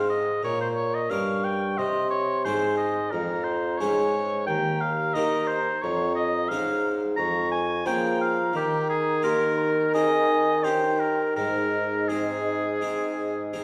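Pulled gently out of time in a rubato 4/4, this solemn, introspective baroque-style sonata movement unfolds as a brief extract from a longer piece, with the clear oboe singing the melody up front with a light vibrato while the pure, wooden-toned baroque flute traces a soft-edged second line. Beneath them, an airy Flemish-style harpsichord with two sets of strings supplies full, plucked accompaniment, and a mellow, distant bassoon carries the bass. The ensemble sits further back in a reverberant recital hall, and the harmony comes to rest on Ab at 11.4 seconds.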